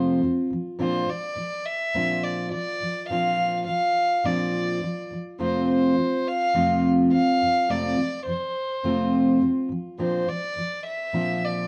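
A moderate studio reverb gives this short excerpt of easy-going, carefree acoustic pop a gentle sense of space, with both instruments sitting up front. A fingerpicked steel-string acoustic guitar, full-bodied and fresh-stringed with a jumbo's depth, carries the accompaniment from the low F2 up to F4 across the full 11.7 seconds. Above it, a single bowed violin plays the melody sul tasto in a narrow band from C5 to F5, its soft attack and smooth, pure top giving it a floating quality. The harmony moves between F and Bbadd9 at a relaxed 104 BPM in 4/4, with a light swing on the sixteenths. The warm, unhurried blend makes the passage feel breezy and open.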